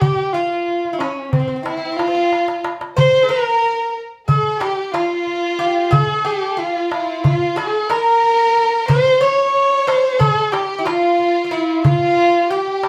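A stately 9/8 pulse at 183 BPM in eighths drives this Turkish makam ensemble excerpt, where a dark, woody kamancheh carries the melody up front with vibrato and portamento, a picked bouzouki adds a metallic, double-strung second line, a crisp metal-shelled darbuka struck with hard hands plays close and a fill at 2.3 seconds leads into a new section at 3.0 seconds, and a lush, distant violin section joins at 1.7 seconds, all heard as a band playing live in one room with a wet studio reverb.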